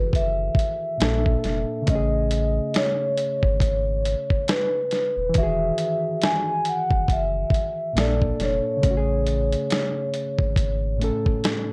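A lazy, swung groove in 4/4 sets the pace of this dreamy, cosy lo-fi hip hop clip, cut from a longer piece, with a gritty, compressed sampler-style drum kit sitting up front. Its thumpy kick, medium-tuned snare and hi-hat carry the roomy character of being re-recorded in a large space, and the kit comes in at 0.1 seconds. Underneath, a deep, full sub bass with an added octave holds sustained, mellow notes with a fast attack, blending sine and triangle tones. A reedy, bright electric piano plays clean, direct accompaniment through the chords Emaj9, A#maj7 and Amaj7, a sequence that cycles twice and returns to Emaj9 at 5.4 seconds. Over it, a vibraphone struck with soft mallets carries the melody in a metallic, ringing, airy voice with medium motor vibrato and a plate reverb, sitting up front. Light reverb and worn, warbling cassette tape with a drifting pitch give the whole clip its dusty haze, with the electric piano and drums lingering to 11.7 seconds.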